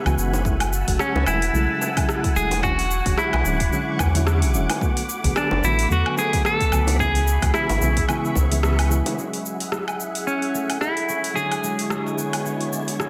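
Sunset chillout at 110 BPM in 4/4 with a swung sixteenth feel, warm and wistful in mood, this short excerpt is cut from a longer piece. A clean, twangy electric guitar carries the melody up front from 1.0 s, its scooped tone trailed by tape echo, over soft, mellow electric-piano-like synth keys colored by chorus and tremolo and a silky string machine holding sustained chords with vintage sampler grit. An airy, breathy wind-like texture sits very quietly beneath, while a round sine sub bass anchors the low end until 9.0 s. The deep house kit brings metallic, overdriven hats, rim clicks, shaker and woodblock, joined by a deep electronic kick until 8.5 s and low-tuned bongos played with soft hands in the background. After a band accent at 8.6 s, a ringing concert harp enters at 9.2 s with fingerpicked arpeggios under a filter sweep as the chords cycle through F#m9 and E13. The sound is dense and heavily limited, set in a moderate digital room reverb.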